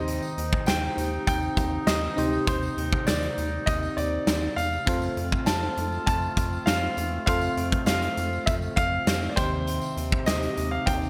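A big, punchy rock drum kit with gated reverb drives this romantic, glossy stretch of 1980s-style pop at 100 BPM, while a clear, intimate grand piano carries the melody through a delay, its action noise audible. Beneath it, a glassy, bell-like FM electric piano shimmers with chorus and phaser, a rubbery square bass bounces low, and a woodwind section holds sustained chords with light vibrato, with a jingly tambourine far in the background. The harmony moves from Cmadd9 to F at 4.9 seconds and Cm at 9.4 seconds, all set in a lush hall with bright digital production, in an excerpt cut from a longer piece.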